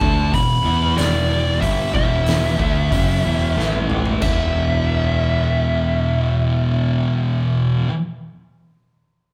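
A moderate large-studio reverb surrounds this band playing live in one room, a sludgy, brooding stoner and doom metal excerpt in E minor at 92 BPM in straight 4/4. Two thick fuzz guitars grind out the riff, one warm and up front and the other dark and set in the background, over a growling picked electric bass with overdrive and tube saturation, while a dark fuzz lead guitar carries the melody high above. An oversized low-tuned acoustic kit with a boomy kick, fat snare and gritty, pumping room sound drives the opening, then plays a fill from 3.6 to 4.2 seconds as the chords move from Em to A5 and on to E5, before it stops at 4.4 seconds.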